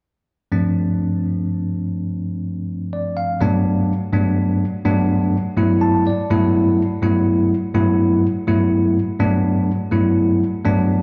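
A bell-like tine electric piano opens at 0.5 s, clean and up front through its built-in speakers, voicing a G9sus4 chord with a slapback echo in a slick, bright jazz setting in a straight 6/8. It adds short fills at 2.7 s and 5.6 s and settles onto Gmaj9 at 3.4 s for the rest of this passage cut from a longer piece. Heard live through a club's PA, the piano sits in a moderate plate reverb and the club's own reverb.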